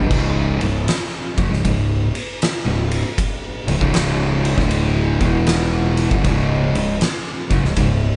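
An up-front, oversized low-tuned acoustic drum kit with a punchy kick, fat snare, dark cymbals and gritty saturation in a pumping stone room anchors this hypnotic, sludgy stoner and doom metal fragment at 78 BPM in swung 4/4 and C# phrygian, tuned to A4 = 435 Hz, as a compressed fuzz guitar and a thicker, shadowy fuzz guitar set back in the mix play a riff over an overdriven fingered electric bass, moving from C#5 to E5 at 5.1 seconds and back at 6.0 seconds, with the band heard live in one room under light reverb.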